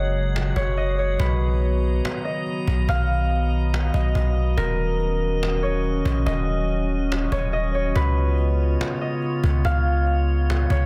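The recording is dense and heavily limited, with little reverb on the mix as a whole, though its airy parts carry their own built-in reverb. This short cut from a longer piece of atmospheric cloud-rap has a blissful, dreamy mood and a half-time feel in 4/4. A thumb-plucked Celtic harp carries the melody, its ringing acoustic tone softened by a low-pass filter and trailed by tape echo. Beneath it, a warbling, nostalgic lo-fi pad of square and triangle waves holds slow-attack chords through F#add9, Bmaj7, D#m7 and C#7, while a deep, sine-toned 808-style bass sits up front with a fast attack and long, decaying notes. A glassy texture of drifting overtones floats calmly through the mix, washed in chorus and reverb. From 0.4 s a woody cajon played with hard hands adds faint snares, sounding distant, as if heard in a large room.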